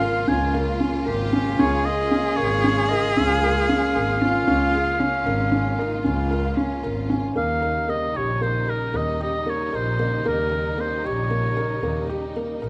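A restless, shimmering chamber piece in 11/8 opens with a felt-muted upright piano rolling soft arpeggios, its action noise audible, over a bowed double bass, a smooth studio string section holding sustained chords, and an up-front oboe singing the melody with light vibrato. An intimate, sul tasto cello with an airy bow traces a second line until 7.1 seconds, just before the harmony moves to a new section, and the oboe falls silent at 12.1 seconds while piano, strings and the boxy, focused bass carry on to the end of this fragment from a longer work. Close, detailed microphones and light reverb keep every part near and clear.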